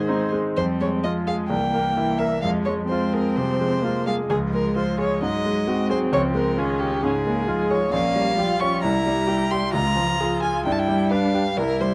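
A quick classical-period movement for piano quartet in F minor, this lively, spirited passage moves at 130 BPM in 4/4 with a rubato feel, cut from a longer piece. The rich violin carries the melody up front and close, its bowed line smooth and even with vibrato, ranging from G4 to Db6. Beside it, the bright concert grand piano supplies accompaniment with a brilliant, open tone, deep bass and short sustain, while the viola adds a warm, smooth-topped accompaniment with vibrato. The clear cello plays a second line, sounding distant and in the background. Light reverb and a dark production frame all four parts throughout, as the harmony moves through F minor, C7, Db and Ab7 before closing on G7 at 10.7 seconds.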